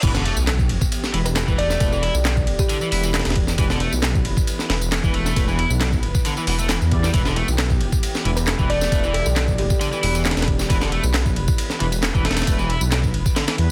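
A rumbling, dark detuned saw bass with tube saturation sits up front beside a gritty, pitched-up sampler-style breakbeat kit with a thumpy kick and high-tuned snare, driving this energetic E minor breakbeat drop at 135 BPM, opened by a very quiet reverse cymbal and sub drop that ends at 1.8 seconds. Layered electronic tambourine and handclaps add to the kit, while a bright, crunchy overdriven guitar riff carries sampler grit, low-pass filtering and delay. In the background, a smooth brass ensemble stabs with light vibrato and a lush, warbling unison pad pumps with sidechain, as a woody, ringing kalimba with an old record sound plays short melodies from 1.3 and 8.4 seconds in a dense, heavily limited mix with light reverb.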